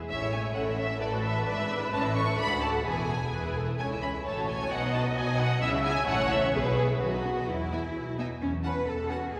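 In a straight, quick 2/4, this graceful, spirited classical-period movement for string orchestra, cut from a longer piece, puts a lush, up-front violin section on the melody over a clear, focused second violin line with a smooth top. Violas with expressive portamento carry the accompaniment, while a rich cello section and a distant, lightly vibrato double bass section share the bass, with the upper strings stopping at 9.2 s and the low strings holding on to 9.4 s. The bowed ensemble sits in the long, wet reverb of a church.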